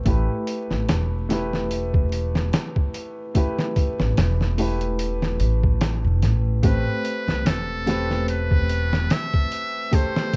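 A clear, boxy upright piano with audible action noise opens this hypnotic, smoky trip hop piece at 73 BPM, colored by harmonic tremolo, 12-bit sampler grit, a low-pass filter and tape echo, over a dark, woody pizzicato upright bass and a compressed, pitched-down sampler-style drum kit with a thumpy kick, medium-tuned snare and hi-hat in a small room. The harmony moves from E minor to Am9, and at 6.7 seconds a brilliant, buzzy trumpet with a metal mute enters with a present, jazz-style solo line and light vibrato, while the bass drops out at 9.1 seconds. The dry recording carries the worn, warbling character of old cassette tape, with vinyl crackle and drifting pitch.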